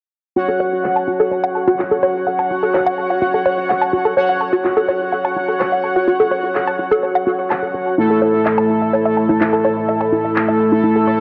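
A lush, wet hall reverb with digital ambience wraps this dark, driving melodic techno passage at 126 BPM in F# minor, cut from a longer piece. A tight, detuned sawtooth synth with a plucky filter runs arpeggios through chorus, phaser, cassette tape and tape echo, while a bold, fat analog synth brass sits up front with sub-octave stabs, filter sweeps and vibrato. Electronic handclaps, re-recorded in a small room and muffled by low-pass filtering, join at 0.8 seconds, and the harmony moves from F#m to A5 at 8.0 seconds.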